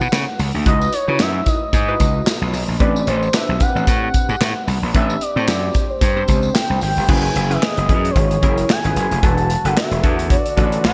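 A lightly swung sixteenth-note groove from punchy drums with gated reverb, handclaps and bright cymbals drives this slick, danceable early-eighties boogie funk fragment, where an overdriven, gritty slap bass sits up front beneath a funky, detuned polysynth comp with chorus, a smooth, expressive sawtooth lead with vibrato, chorus and delay sings the melody, a jingly tambourine stays in the background until 7.1 seconds, and a very quiet, clear brass section then adds sustained chords over the sus-chord shift, all in a bright digital 1980s-style production.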